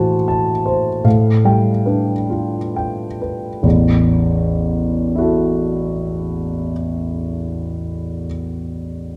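Hazy and nocturnal, this brief excerpt of impressionist classical solo piano drifts in A minor and 3/4 at a very slow 31-43 BPM, its rubato pulse slowing down through the first 3.6 seconds as the harmony moves from Am6 to G9/A before settling on an open A5. The concert grand sits up front and intimate, with deep bass reaching down to A1, a natural tone and audible action noise. A wet recital hall reverb and dark production wrap the playing across its 9.2 seconds.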